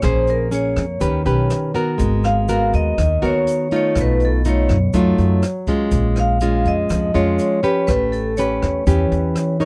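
Melancholic and wistful, this short bossa nova excerpt moves at 122 BPM in a straight 4/4, its harmony drifting through rich minor ninths, an altered dominant and a sharp-eleven chord. A vibraphone struck with medium hard mallets carries the melody, its metallic, ringing tone shimmering with a slow motor vibrato in a boxy small room. Up front, a fingerpicked nylon-string guitar supplies classical-flavored accompaniment, while a woody, thumpy upright bass with gut strings plays pizzicato underneath. An open jazz drum kit keeps time with hi-hat, rim click and a boomy kick, sounding natural and acoustic, and a grainy, bright egg shaker sits in the background. The dry, close sound of a 1970s-style studio, with little reverb, keeps every part intimate as the passage runs to about 9.7 seconds, cut from a longer piece.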